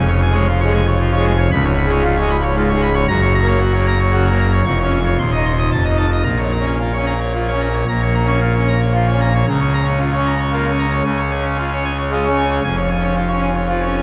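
Set in a straight triple metre, this jubilant, majestic classical organ toccata is a 14-second cut from a longer piece, played by a lone pipe organ on full organ. The registration gleams with brilliant mixtures and a baroque voicing, and the attack of each note carries a distinct chiff, with the instrument placed up front. Its range spans from deep Db1 tones to Db6 in the treble. The harmony moves through major-key colours before settling on the minor tonic at 6.3 seconds, and the opening section returns at 7.9 seconds. A long, wet church reverb with a 3.2-second decay surrounds the organ, and the production leans dark.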